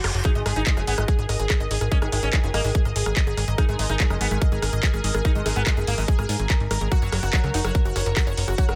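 This psychedelic trance excerpt opens at once with a resonant sawtooth drone sitting in the background, its overtones moving through chorus, phaser and built-in reverb while sidechain pumping makes it breathe, alongside a punchy, funky analog bass whose filter plucks and moving notch keep it up front. A layered electronic kit adds handclaps, rim clicks and metallic hats, and from 0.2 seconds a tight, forward electronic kick drives the straight 4/4 pulse at 144 BPM. A lush, detuned unison pluck riff enters at 0.1 seconds, full-bodied with a noise layer and decaying quickly into tape echo and pumping. A plectrum-plucked sitar carries the melody with a buzzing, shimmering tone and ringing sympathetic strings, colored by its own phaser, tape echo and sidechain movement. The mood is intense and psychedelic, and the mix is dry and close, with the drums carrying the feel of a small room.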